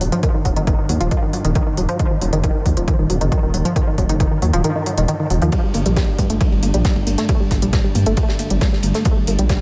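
A tight, up-front sequenced synth riff with chorus, sampler grit, tape echo and sidechain pumping opens this driving, relentless peak-time techno excerpt over a deep, rumbling detuned saw bass, a very quiet, eerie metallic drone and smooth pumping electronic hi-hats, with a punchy layered kick arriving at 0.2 seconds and dropping out from 4.6 to 5.5 seconds. At 5.5 seconds the harmony moves from E-flat minor to G minor and a soft, airy acoustic kit adds high-passed ride cymbal and a high-tuned snare in light small-room ambience.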